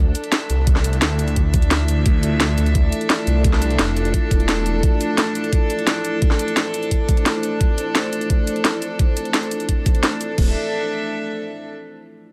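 A lightly reverberant mix frames this futuristic, mechanical slice of dark technical drum and bass at 173 BPM in D minor, resting on a Dmadd9 chord. A swirling, saturated, phaser-treated detuned saw bass fills the low end until 4.8 s, while a deep, moody ambient pad with chorus and a slow attack and a distant, earthy chamber string section both pump with sidechain. Overdriven, layered drums re-recorded in a small room bring a knocking electronic kick from 0.7 s alongside a cracking snare, bright hats, cabasa and crash, with the drums stopping at 10.4 s and the strings carrying the close.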